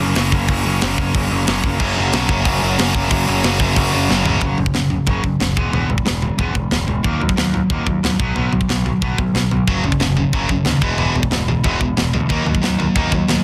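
An upbeat, energetic punk rock excerpt in a straight 4/4 drive, where a bright, compressed distorted electric guitar riff and a growling, punchy overdriven picked bass start together, a tight, gritty metal drum kit with a saturated, rolled-off top and soft-clipped kick joins at 0.2 seconds, a second tight distorted guitar riff comes in at 1.8 seconds, drops out once a drum fill marks the shift into a new section at 4.4 seconds, and returns at 9.7 seconds, and the chords cycle through F#5, E, D#m and B5 in a dense, heavily limited, nearly dry mix.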